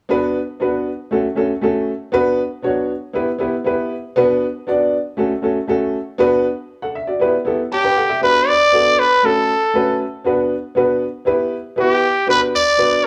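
Soul with a driving, passionate mood, set in a straight four-four feel and cut from a longer piece. A woody, boxy upright piano carries the accompaniment from the start, its short-sustained chords sitting up front as the harmony circles between minor chords. At 7.7 seconds a growling trumpet enters with the melody, a raspy, gritty solo voice with light vibrato and a brilliant, pop-style edge that stands out over the piano. Trumpet and piano both play until 13.1 seconds, with the trumpet the louder of the two. Light reverb gives the sound a small room ambience.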